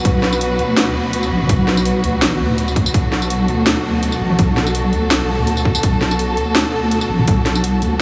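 A half-time drum and bass groove with a light sixteenth-note swing drives this short, spacious and tense excerpt, cut from a longer piece. An electronic kick, hard-clipped and overdriven, sits up front beside a layered, overdriven drum kit of cracking snare, bright hi-hats, tambourine and toms, re-recorded in a small room. Beneath them a deep, dark wobble bass with a rounded sine-and-triangle tone, fast attack and chorus holds long notes. A studio string section carries sustained chords from the very start, bowed with vibrato and portamento, its smooth top roughened by vintage 12-bit sampler grit and sidechain pumping. The whole mix is soaked in a huge, dreamy reverb tail that gives the drums a vast, hazy backdrop.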